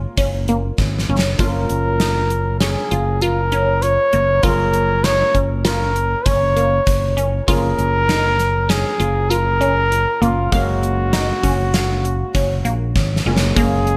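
A warm, boxy grand piano sits in the background with a punchy fingered electric bass up front as this progressive instrumental opens in F# major on an F#maj7 chord, moving at 99 BPM in a straight 5/4. A juicy, squelchy synth pluck with a resonant filter, fast attack and short decay arrives almost at once with bright arpeggios, colored by phaser and tape echo. A polished, gated 80s drum kit of hi-hat, tight kick and medium-tuned snare sits up front in an airy stone-room sound, with a fill at 0.8 seconds and another at 13.0 seconds. At 1.4 seconds a mellow jazz-style trumpet takes the solo melody up front, with light vibrato, scooped notes and a touch of tape echo. The mood is bright and intricate, set in moderate studio reverb, and the passage is cut from a longer piece.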